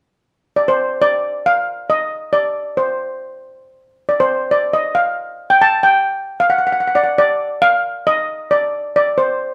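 A lightly swung sixteenth-note calypso groove in 4/4 carries this driving, dramatic fragment from a longer piece, where a lone lead steel pan, struck with hard rubber sticks, plays up front from 0.6 to 9.5 seconds with a dark, shimmering tone in a moderate room reverb.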